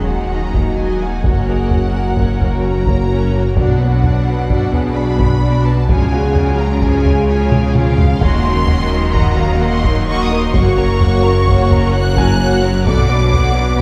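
Heard from further back in a wet scoring-stage reverb, this futuristic, vast hybrid orchestral and electronic film cue in 5/4 at 129 BPM opens on a huge, barely audible impact as two smooth, vibrato-rich violin sections carry the melody and a second line over intense violas, dark, distant French horns, an ethereal detuned pad, lush cellos and double basses, a deep, round sub bass and a very quiet, intimate grand piano, with heavy-stick taiko drums entering at 0.5 s and a drum fill at 7.5 s, all moving through Ebm, Gb, Bm and Db.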